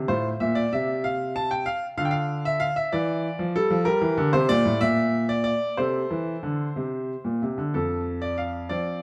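A classical-period piano sonatina fragment in F major, elegant and playful, moving at 63 dotted-quarter beats per minute in a rubato 6/8 and tuned to A4 = 438 Hz, with a solo grand piano that sounds brilliant and up front, with long sustain across F2 to A5, captured by close, detailed microphones in a moderate recital-hall reverb as the harmony passes from F/A through Dm and Gm to C69 and Bbadd9 before a new section opens at 7.8 seconds on F5.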